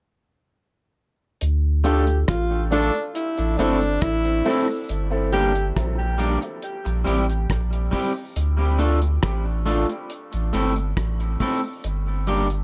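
An echo-heavy, lightly reverberant small-room mix frames this hypnotic, deep dub reggae excerpt in D minor at 69 BPM, where a round, up-front sine sub bass and a damped, dark 70s drum kit of kick, hi-hat and rim click run from 1.4 seconds, a twangy, slightly broken-up electric guitar plays dub-echoed accompaniment from 1.8 seconds, and a bright, close-miked tenor saxophone with vibrato and a grand piano's echoing stabs appear briefly before dropping away by 5.7 seconds.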